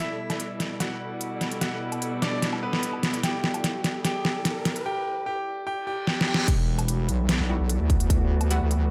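A bright, brilliant concert grand piano carries the melody with dub echo over distant, reedy strings pumping under a low-pass filter, an ethereal warbling pad, background risers and a reverse cymbal, and a crisp-hatted dubstep kit with drum fills, building in E minor at 148 BPM half-time until a heavy, saturated wobble bass and punchy kick drop in at 6.5 seconds, joined by a bold, detuned orchestra-hit-like synth stab at 7.5 seconds in this chaotic wobble dubstep excerpt.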